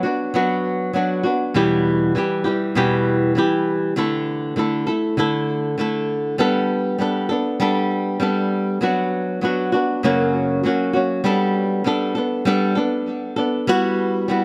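A straight 4/4 pulse at 99 BPM carries this reflective, tender pop piece, cut from a longer work, in which a fingerpicked flamenco guitar plays alone, up front. Its dark, woody tone with old strings spans E2 to A4, touched by digital delay and set in a moderate plate reverb with a long tail. The harmony moves from Bm/F# through Em, Dsus2 and Gadd9 to a tense F#, then shifts into a new passage at 11.2 s that rests on Gadd9 and Emadd9/G.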